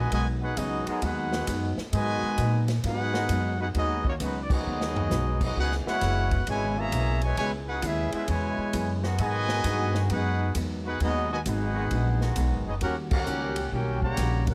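A brassy, swinging big band jazz excerpt in G# minor at 132 BPM opens with a tight trumpet section carrying the melody up front, a smooth-topped trombone section playing a second line behind it, and a woody, bright pizzicato upright bass with steel strings. Almost at once, a dark, compressed hollow-body electric guitar adds clean picked accompaniment in the background. The drum kit joins at the same moment, with an airy, polished hall sound, a punchy kick, a medium-tuned snare, hi-hat, ride, crash and toms. From 0.9 seconds, a second, vintage-toned trombone section holds sustained chords with light vibrato beneath the band. The harmony moves from G#m7 to C#m7, back to G#m7 and onto a D#7#9, with full-band accents at 4.4 and 13.0 seconds and a short drum fill just after the first. Close, detailed microphones and light reverb keep each part distinct.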